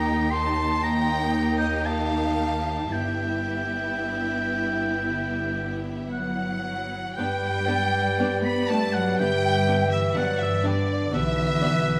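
Moving and tender, this cinematic film-score passage for orchestra is cut from a longer piece and unfolds in G major at a slow, rubato 54-63 BPM in 4/4. A lush violin section carries the melody with expressive vibrato. Above and around it, a clear, roomy solo oboe sounds from a distance, and a second, closer violin line with portamento sits beside a rich, focused viola section. Underneath, a ringing concert harp plays very quiet arpeggios, while smooth, even cello and double bass sections hold the low end, the cellos set in the background. At 7.2 seconds a vintage-toned clarinet enters in the background and a mellow, tight French horn section adds sustained chords, as the harmony moves from Eb through G6 to G and finally Bm. A moderate scoring-stage reverb gives the whole orchestra a generous sense of space.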